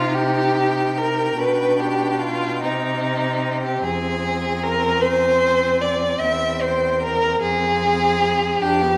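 Set in the long, wet reverb of a recital hall, this solemn, melancholic slow romantic movement for string quartet unfolds in C minor at 50 BPM in a rubato 6/8, cut from a longer piece. One violin carries a high melody with vibrato, sitting in the background, while a second violin plays a focused, up-front counterline that still sounds distant. Beneath them, a rich, close viola bows the accompaniment and a smooth, even cello holds the bass, as the harmony moves from Cm through G/B, Fm and C/E before settling back on Fm across the 9 seconds.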